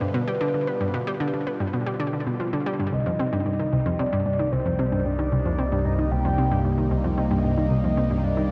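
Ambient, sequencer-driven space music in C minor at 113 BPM, this mysterious, expansive excerpt moves from G7 to Cm7 at 2.9 seconds, with a bright, nasal analog pluck riff sitting up front with chorus and delay over a swirling, detuned pad treated with phaser and chorus. A soft, dark, octave-layered synth lead carries the melody with vibrato, chorus, phaser and delay, while a mellow, ring-modulated analog drone on C enters at 4.0 seconds. A huge ambient reverb, moderate in level, surrounds the whole.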